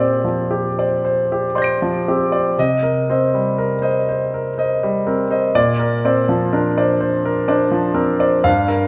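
A clear, intimate grand piano opens this luminous, serene fragment of impressionist classical solo piano in Bb major, drifting in rubato 6/8 at 41 BPM across a span from G2 to D7, its polished, up-front tone carrying long sustain and audible action noise through Bb69, Cm7 and Bbadd9 harmonies in a moderate scoring-stage reverb before being cut off at 8.9 seconds.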